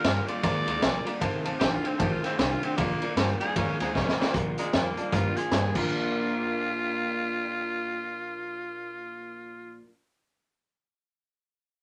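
Swung eighths at 154 BPM drive this rollicking, retro rockabilly piece in Bb major, where an up-front, raspy tenor saxophone carries the melody with light vibrato over a thumpy, woody pizzicato upright bass, while a twangy, slightly broken-up electric guitar riff, a full-bodied picked steel-string acoustic guitar and a bright, slightly detuned upright piano with audible action noise sit in the background, and a gritty, punchy garage drum kit plays a fill at 4.0 seconds before dropping out at 5.8 seconds, set in a moderate studio ambience.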